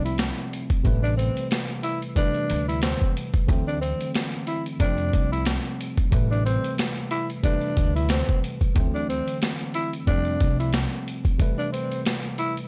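Boom-bap hip-hop with a moody, dark cast, cut from a longer piece in 4/4 with a swung sixteenth feel, cycling through Fadd9, Am7 and D7. Up front, a growling tenor saxophone plays a breathy, raspy jazz-style solo with vibrato and scooped notes, trailed by tape echo, over a worn, slightly out-of-tune tine electric piano heard through built-in speakers and a woody pizzicato upright bass that drops out at 10.8 seconds. A compressed, pitched-down sampler-style drum kit with a thumpy kick and high-tuned snare sits up front in the dry, gritty cassette-tape recording.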